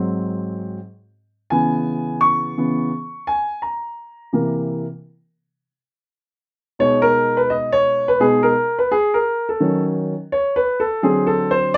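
This rough home demo has a moderate studio reverb, giving the solo piano a modest sense of space while keeping it up front. The piece is a relaxed, cool hip hop fragment in 4/4, cut from a longer piece, with a lazy swing on the sixteenths. A dark grand piano carries everything alone, its mellow tone spanning from deep in the bass to the upper register. The harmony moves through jazzy seventh chords, from G#7 into C#m7 and then C7. At 6.8 s a second section begins on B6, passing through D#m7b5 before settling on D7 near the close at 11.8 s.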